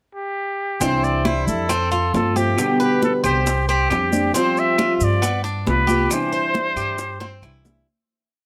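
Sunny Cuban son and guajira at 136 BPM in C major, where a breathy, whispered trumpet with vibrato opens the pickup at 0.2 s and carries an up-front motif-based melody over a band that enters at 0.8 s, with a dark, boxy fingerpicked steel-string acoustic guitar showing finger squeak, a metallic double-stringed Cuban tres playing an arpeggiated guajeo, a thumpy pizzicato upright bass in a tumbao that anticipates the chords, thick-skinned high-tuned congas with slaps and open strokes in the background, very quiet round bongos in steady eighths and grainy maracas, joined at 1.3 s by distant woody claves on a two-bar time line, all in light reverb with close, detailed microphones before a fade-out from 6.1 s and a closing drum fill.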